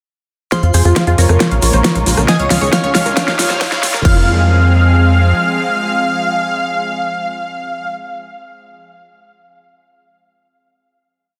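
Uplifting trance with a soaring, bittersweet mood, opening on a build where a punchy, overdriven four-on-the-floor kick, a big-room kit with a huge snare, metallic hats and a fill, a grainy egg shaker and a very quiet riser drive under filter sweeps on the supersaw stab, the analog pluck and the plucky unison lead. The detuned supersaw stab carries a repeating riff in sixteenths over a pedal note with phaser and digital delay, shadowed by a crystalline FM bell riff in octaves and the gritty unison lead doubling an octave higher, while a round analog pluck sequence, a lush, nasal pad and a tight, rolling sequencer bass pump beneath. At 4.1 seconds the drums stop and the piece lands on a sustained final F minor chord that rings to the end.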